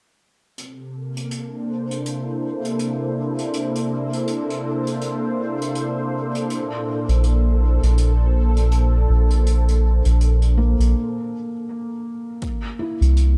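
A loose 4/4 pulse with swung sixteenths gives this hazy, spacious ambient dub fragment its gentle lilt, carried by a brushed acoustic hi-hat with a rolled-off top that sits mid-forward in the mix. Up front, a warm analog pad of detuned sawtooth voices with chorus and a moving notch holds slow-blooming chords, shifting from C7 to Bbmaj7 and back. Behind it, a dark, breathy wind-like noise texture drifts in the background, with its own reverb. At 7.1 seconds a soft, round sub bass arrives up front, deep and sustained, and at 10.6 seconds a felt-muted upright piano adds mellow, intimate arpeggios bathed in dub echo, its action noise audible. A brief break follows, and a deep, tape-warm electronic kick lands once at 12.4 seconds, all captured with little overall reverb in a cut from a longer piece.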